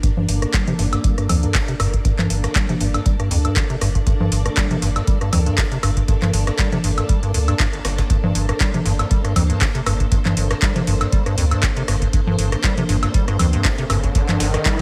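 Acid house with a raw, hypnotic feel, built on a squelchy, resonant square-wave acid bass riff with a filter sweep, a deep tape-warm electronic kick up front, a booming analog drum machine with metallic hats, congas, handclaps, rim clicks and woodblock, a gritty sampler-style breakbeat kit with a high-tuned snare set in the background, a round, dark wave-folded bass entering at 0.3 seconds with sidechain pumping, and lush, mellow string machine chords with ensemble chorus and pumping, before an electronic riser arrives at 13.0 seconds in this dry, swung cut from a longer piece.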